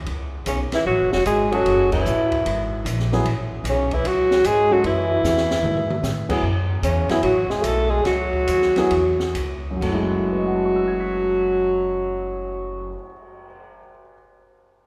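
Spiritual and hypnotic, this modal jazz excerpt in F# dorian swings in 4/4 at 128-151 BPM. A woody pizzicato upright bass and an open drum kit with dark cymbals, a high-tuned snare and a boomy kick support a breathy, up-front alto saxophone that scoops its notes above a raspy, growling tenor saxophone line. A grand piano with long sustain and audible action noise joins at 1.5 seconds, the band hits an accent at 1.9 seconds, and after a drum fill the music slows down from 6.4 seconds as the harmony shifts away from F#m9 and returns, the ensemble ringing in a church-like space with a long, wet reverb.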